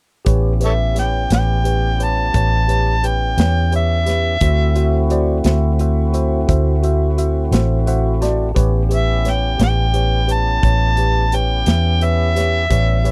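An overdriven harmonica leads this soulful, laid-back slow blues in 12/8, its gritty, amplified tone sitting up front with vibrato, scooped notes, tongue slaps and a jazz-inflected solo voice, entering at 0.7 seconds. Beneath it, a vintage muted fingered electric bass holds the low end with a dark, round, foam-muted sound that is also placed prominently. A natural country drum kit of hi-hat, tight kick and medium-tuned snare plays in a small acoustic room, while a tonewheel organ supplies fat, clean sustained chords through a slow rotary speaker. A worn, slightly out-of-tune tine electric piano, heard clean through a combo amp with a subtle chorus, fills out the accompaniment and steps forward with a brief fill at 7.5 seconds. The harmony moves from A9 to D9 and back to A9, and the dry, close 1970s-style studio sound keeps this excerpt, cut from a longer piece, intimate and immediate.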